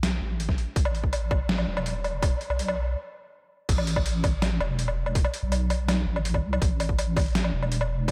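Heavy and spacious, this half-time drum and bass excerpt at 164 BPM in A minor pairs a deep, dark wobble bass thickened with chorus and a gritty, pitched-down sampler-style kit of crash, hi-hat, medium-tuned snare and woodblock, joined at 0.5 seconds by a hard-clipped, tape-tinged electronic kick, all bathed in a lush hall reverb as a build-up halts at 3.0 seconds before the drop lands at 3.7 seconds.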